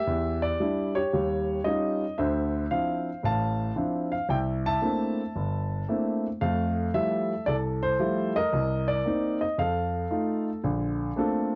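A grand piano plays alone, sounding intimate and natural, placed up front with its action noise clearly audible, in a relaxed, playful swung 4/4 solo jazz passage about 11.6 seconds long, cut from a longer piece. The harmony moves through rich extended chords, from Em7 and Eb9 through Dm9, C13 and Fmaj9 before Cm7 and F7 lead to Bbmaj9 at 10.6 seconds, with the piano spanning from deep bass up into its upper middle register. The sound is dry and close, in the manner of a 1970s studio recording, with a modest booth ambience.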